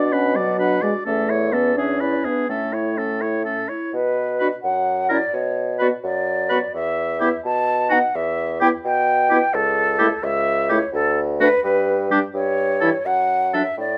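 Lively and cheerful, this quick classical-period movement for wind quintet moves at 85 BPM in a straight 6/8, set in A major and cut from a longer piece. The concert flute carries the melody with an airy, expressive tone, tongued notes and vibrato, sitting up front, while the oboe's vibrato-touched second line has a smooth top. Beneath them, a mellow French horn with light vibrato and a roomy clarinet fill in the accompaniment from a little further back, and the bassoon anchors the bass with a punchy, warm sound and light vibrato. The harmony opens on B minor and settles toward A, and after a short opening phrase a longer passage begins at 3.9 seconds, passing through B7, E minor and G, with brief chordless moments along the way. The inner voices drop out at 13.6 seconds, leaving flute and bassoon to finish at 14.0, all within a light reverb.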